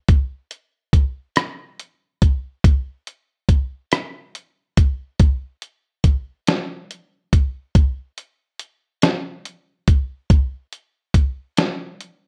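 A dusty, sampler-style soul drum kit carries this late-night R&B piece on its own from 0.1 to 12.2 seconds, its gritty, compressed sound built from hi-hat, rim click, a medium-tuned snare and a thumpy kick. The groove moves slowly at 47 BPM in 6/8 with a straight feel, giving a yearning, unhurried mood. Sitting up front in a dark mix with light reverb, this short cut from a longer piece feels intimate and moody.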